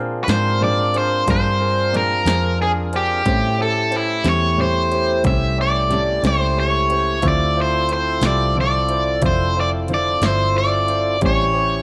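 An overdriven electric guitar carries the melody up front in this mournful, soulful slow blues, its bright, picked tone doubled by a slapback echo as it enters at 0.2 seconds. The piece moves in a straight 12/8 at 60 BPM in D minor, and this passage is cut from a longer piece. Beneath it, a fat, clean tonewheel organ holds sustained chords through a slow rotary speaker, while a dark, round, foam-muted fingered electric bass gives a punchy, amped foundation. A brilliant grand piano sits in the background with accompaniment, and a very quiet, clean electric guitar adds fingered support. A layered, electronic big-room dance kit brings a punchy kick and snare with metallic hi-hats, and a moderate plate reverb surrounds the ensemble as the harmony moves from Bb7 to A7#9 and on to Dm9.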